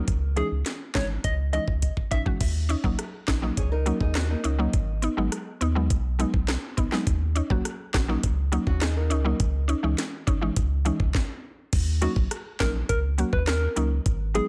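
A straight 4/4 dancehall groove at 103 BPM in Eb phrygian, tough and hypnotic, rides an electronic island pop drum kit with knocking kick, sharp snare and metallic hats, joined by a round sine sub bass and a woody, detuned FM mallet-like synth pluck with chorus, while a gentle, warbling keys-like synth lead with chorus and digital delay sings at 0.4 s and returns at 12.0 s, a dark, fingerpicked nylon-string guitar adds brief delayed arpeggios, and a drum fill at 1.8 s and a stop at 11.1 s punctuate this dry passage cut from a longer piece.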